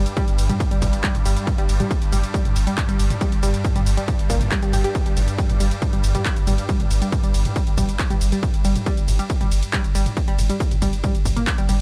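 A straight 4/4 pulse at 138 BPM drives this short cut from a longer peak-time techno track, anchored by a heavy, overdriven electronic kick that enters at 0.2 seconds. Around it, a layered techno kit of handclaps, hi-hat, ride cymbal, shaker and toms pumps against the sidechain, its tape-softened hats carrying the grain of a small room. Underneath, a thick, saturated sine sub bass holds a deep G1 in the background, pumping and low-pass filtered. A warbling, lo-fi pluck built from pulse, sawtooth, sine and a noise layer plays a riff between G3 and G4, wave-folded and mellow, with chorus, tube saturation, delay and a filter sweep. A tense, swarming drone of detuned unison sine and triangle tones, granular and slowly evolving between G2 and G3, breathes through its own reverb inside a digital ambience, keeping the mood driving and hypnotic.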